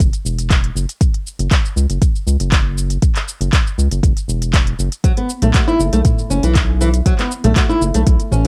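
A deep, up-front electronic kick and a round, dark analog bass open this afro house excerpt at 119 BPM in straight 4/4, the bass pumping against the kick from its low register between E1 and C#2. Around them, a produced afro-pop kit adds handclaps, smooth hi-hats, shaker and toms, all with a tape-softened edge that gives the groove an earthy, spiritual feel in F# minor pentatonic. The harmony rests on F#5 before moving to B5 at 5.0 seconds, where a fingerpicked flamenco guitar enters with arpeggios between E3 and F#4. Up front and warm, the guitar carries audible finger squeak, and its notes breathe with sidechain pumping, cassette coloring and analog delay. The whole short fragment is dry and close, with a homemade cassette character that keeps it grounded.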